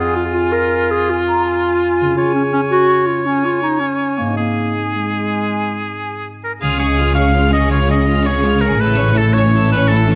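A present, up-front solo clarinet opens this heroic adventure film score cut, carrying a second line alongside a clear, close-miked oboe and a mellow, hollow flute section set in the background. A ringing, thumb-plucked concert harp plays arpeggios throughout. The music moves in a triumphant 12/8 at 109 BPM in Ab major, passing through Fm, Db and Ab. At 6.6 s the flutes and clarinet have dropped away and the strings enter: a focused, lush violin section takes the melody high above, while a smooth, even studio violin section and a viola section add background lines. Rich cello and double bass sections anchor the bass, the basses up front, and a brief, dry triangle touch marks the new section as the harmony shifts from Db to A. A moderate scoring stage reverb gives the whole a spacious, cinematic sheen.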